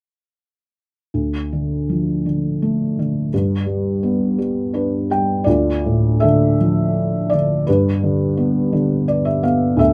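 A felt-muted upright piano plays alone from 1.1 s in this dark, melancholic classical excerpt, its thick-felt, mellow tone sitting up front and intimate under close, detailed microphones and light reverb, as it moves with rubato at a slow 55 BPM in 6/8 through D minor and G chords, spanning D2 to G5 and adding brief fills at 4.4 s and 8.7 s.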